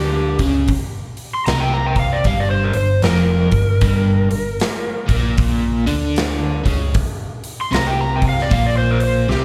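Blues rock in a power trio vein with a southern rock lean, this smoky, heavy swung passage is heard as a live club gig through the venue's PA, with light reverb. An overdriven slide guitar plays a bright, fingered solo with slapback echo over a Gm chord, while a crunchy, double-tracked picked guitar drives the riff up front with tremolo and slapback, and a dark, round hollow-body short-scale bass anchors the low end. A big rock drum kit with a punchy kick, medium-tuned snare and hi-hat enters at 0.4 seconds and closes with a fill at 9.3 seconds.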